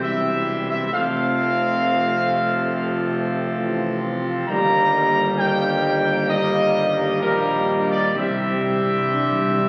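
Majestic and solemn, this brief classical passage, cut from a longer piece, moves at a stately pace in a straight four. A clear, distant trumpet section carries the melody up front, joined there by a brilliant full pipe organ whose mixtures and romantic voicing fill out the sustained chords. In the background, a warm French horn section and a smooth-topped trombone section hold sustained chords with light vibrato, while a mellow, roomy tuba anchors the bass. The harmony moves from C to F, then to Eb over G, and returns to C at 8.1 seconds, where timpani struck with hard mallets on calf heads add an articulate, close and dry fill. A wet recital hall reverb surrounds the ensemble, and the sound carries the crackle of a very old 78 rpm record.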